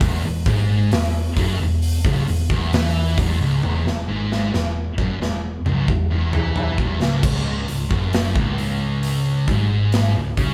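Stoner and doom metal at a slow 67 BPM in C# minor, this hypnotic, ominous fragment has two thick fuzz guitars grinding out a riff, one dark and set in the background, the other warm and distorted, over a round, punchy hollow-body short-scale bass with overdrive. A big rock drum kit sits up front with bright cymbals, a medium-tuned snare and a punchy kick, and plays a fill from 3.6 to 7.2 seconds, after which the harmony moves from C#madd11 to a bare C#5. The band plays live in one large studio room with moderate reverb.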